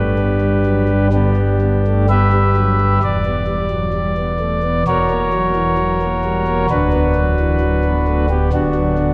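Dark and solemn, this brief 9.1-second fragment of a classical, chorale-style piece in B minor unfolds at a rubato 65 BPM in 4/4 on a solo pipe organ, whose principal stop sounds smooth and up front with a baroque voicing and a touch of chiff across a range from D1 to E5, moving through G, Em, F#7/E and Bm/D as a wet church reverb with a 3.6-second decay lingers around it.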